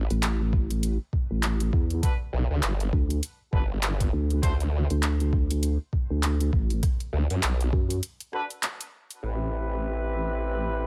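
Glitch hop with a swaggering, gritty swing, built on two up-front wobble basses: one a saturated, detuned sawtooth with chorus and overdrive, the other darker and nasal, its vowel-like formant sweep dropping out at 8.0 seconds. A pitched-down, thumpy electronic kick re-recorded in a large room sits alongside an overdriven kit of handclaps, bright hi-hats and rim clicks, both carrying studio reverb, before a break from 8.0 to 9.2 seconds. A distant, roomy horn section with light vibrato stabs through with 12-bit sampler grit, sidechain pumping and dub echo, and a filter sweep on the horns colours the closing stretch in this excerpt cut from a longer piece.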